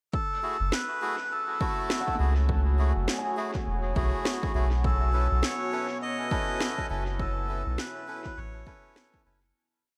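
A reedy, breathy melodica opens this deep, meditative ambient dub piece at 102 BPM in F# minor with a motif-based melody of call phrases through dub echo. It sits over a punchy, overdriven electronic kick, a second nasal melodica playing off-beat chord stabs moved in parallel, and a round, up-front sub bass carrying a dub-style line. A woody, overdriven snare adds a sparse echoing beat with 60% swing on the 16ths, while a moody, detuned pad with chorus brings slowly shifting chords from 1.7 s, and a felt-muted upright piano with audible action noise drifts two unequal arpeggio loops in the background from 2.0 to 5.1 s. The harmony moves from F#m9 to B9sus4 in a lightly reverberant studio room, with a fade-out beginning at 6.4 s.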